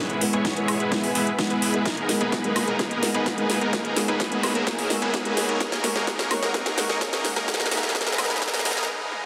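A straight 4/4 pulse drives this euphoric, powerful festival progressive house build-up, cut from a longer piece, with a drum fill running nearly throughout and a brief break arriving at 8.9 seconds. Up front, an overdriven house drum kit brings a cracking snare, metallic hats, toms and woodblock, while a punchy, layered electronic kick sits further back in a large room. The main riff comes from a huge, thick, airy supersaw with a sub octave and noise layer, compressed, filtered and echoed, and it pumps against the sidechain. A lush, warbling vintage pad holds sustained chords in the background with chorus and the same pumping, and a felt-muted upright piano adds soft, intimate accompaniment with audible action noise and tape echo. A fat analog bass is barely audible underneath, and a very quiet riser enters at 2.5 seconds as a filter sweep spans the whole passage. Drenched in a vast ambient reverb and a dense, heavily limited master, the chords move from E through G#madd9, C#m7 and F# before returning to E.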